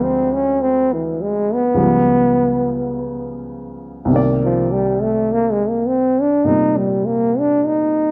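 This jazz ballad moves at a slow 51 BPM with a swung 4/4 feel, creating a romantic, late-night mood over a short passage of Dm7b5, Db7#11 and Cm9 chords. A warm trombone carries the solo melody up front, with vibrato and scooped notes and a slapback echo. A woody, natural upright piano accompanies it, heard close and present in a dry 1970s-style studio sound with light reverb.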